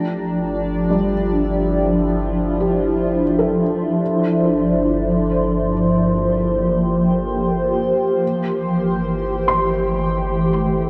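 A slow, straight 4/4 pulse at 57 BPM carries this short, melancholic ambient passage, cut from a longer piece and running about 10.9 seconds. Up front, a shimmering pad holds sustained chords through Dm9/G, C7sus4/G and Am7/G, its ethereal, granular tone thickened by an octave-up shimmer, chorus and phaser, with slow attacks and long releases. A felt-muted upright piano plays soft, intimate arpeggios beneath it, boxy and mellow, with audible action noise and a tape echo trailing each phrase. Underneath, a deep, ominous drone rumbles on a low G, its dark triangle and sawtooth tone sustained throughout. The whole sits in a cathedral-like reverb of 5.3 seconds and carries the worn, warbly pitch drift of old cassette tape, giving the passage a spacious feel.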